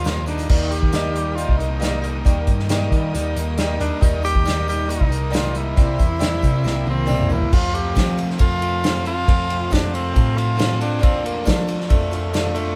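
A clear, close-miked tenor saxophone carries the melody of this open-road folk and heartland rock excerpt from the first moment, over boxy swing-style picked acoustic guitar, a round hollow-body electric bass, a dark, double-tracked overdriven guitar riff tucked in the background, a faint jingly tambourine and an unplugged drum kit with a punchy kick, played with bundle sticks up front, while a distant, lush bowed string section holds very quiet sustained chords until 7.5 s, and a drum fill from 6.6 s marks the move into a new section, all of it heard as a band playing live in one room with light reverb.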